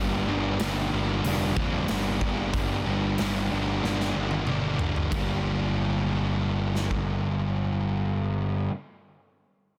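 Cathartic and dark, this short excerpt of quiet-loud alternative rock in G minor moves at 92 BPM in a straight 4/4, built on a distorted, double-tracked fuzz guitar riff sitting up front, a growly overdriven picked electric bass, and a big acoustic rock kit entering at 0.6 seconds with a punchy kick, bright cymbals and a drum fill from 3.8 to 5.1 seconds leading into a new section, all captured in studio ambience with a dense, heavily limited modern master.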